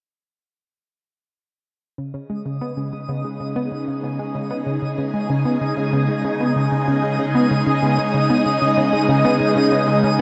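This excerpt of ambient, sequencer-driven space music opens at 2.0 seconds with a phased string machine and a tight sequenced synth fading in together over a C#sus2 chord, moving at 95 BPM in a straight 4/4. The string machine holds sustained chords between C#3 and G#4, its vintage sawtooth tone swirling through ensemble chorus and phaser, bright and up front with slow attack and long release. Beside it, the detuned sequenced synth drives a riff between C#3 and B3, blending sawtooth and pulse wave with a filter pluck and fast attack, treated with chorus and delay. At 2.6 seconds a twinkling granular texture fades in on a high D#5, sparkling with an octave-up shimmer from FM tones and its own built-in reverb. The mix sits in a wet shimmer reverb with an 8.4-second tail, giving a dark, hypnotic and expansive atmosphere that carries through to 10.2 seconds.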